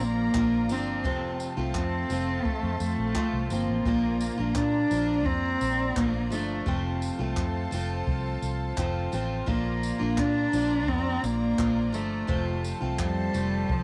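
Lightly reverberant with the character of a home cassette recording, this carefree, easy-going acoustic pop excerpt places a bowed cello melody, warm and expressive with vibrato and portamento, up front over a picked steel-string acoustic guitar and a floating, soft-attack sul tasto string section, those three carrying a cassette tape tint, while a dark, round, punchy muted electric bass holds the low end and a brush drum kit with boomy kick, handclaps and tambourine joins at 0.3 s.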